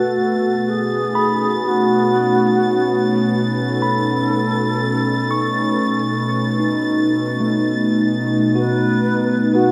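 Ambient and peaceful, this luminous fragment of a longer piece sets a pure, distant alto flute melody with tape echo over a warbling, detuned tape-like pad bathed in chorus, while a dark, sul tasto chamber violin section adds a high, intimate texture, a clean tine electric piano enters with echoed arpeggios at 1.2 seconds and fades out alongside the violins, and a very quiet, evolving analog drone appears at 9.1 seconds, in a vast, echoing cathedral space.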